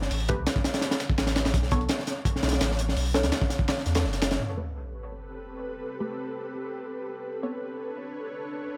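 At 168 BPM in straight 4/4, this drum and bass and jungle excerpt opens on a crunchy breakbeat kit, saturated and gritty with a punchy kick, a high-tuned snare and a rolled-off top, layered from 0.1 seconds with a very quiet, compressed soul-sampler kit carrying a fat snare and hi-hat. A thick, deep sub bass with a triangle tone and fast attack sits up front beneath them in A dorian, and both kits and the bass drop away at 4.4 seconds. Filtered dub chord stabs, muted and mellow in the background, pluck through phaser, subtle chorus, cassette tape character and dub echo, moving from an open start to B7(no3) and lingering until 7.5 seconds. At 4.4 seconds an electronic sub drop lands as an impact, and soon after an ethereal, airy pad swells in with a slow attack, detuned sawtooth and unison layers, a noise layer and a sub octave, bathed in ensemble chorus and reverb over Am9 and then Bm9. 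The whole passage sits in small room ambience, leaving a nostalgic, atmospheric impression.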